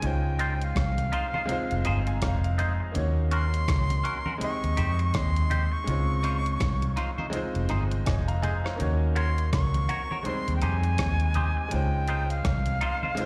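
An airy, reedy silver flute with vibrato carries the melody through this smooth, sweet lovers rock reggae passage, its tape and slapback echoes trailing over a brilliant, intimate grand piano that adds a fill between 1.5 and 2.9 seconds. A dark, round, foam-muted electric bass and a thumpy, sampler-style 80s drum machine of kick, hi-hat and rim click sit up front, while ringing, low-tuned congas stay very quiet and a twangy, clean, compressed guitar enters at 0.4 seconds with phaser-tinged stabs. The swung groove cycles through Dbmaj9, Fm7, Ebm7 and Abmaj7, heard as a live gig through the venue's PA with recital hall reverb.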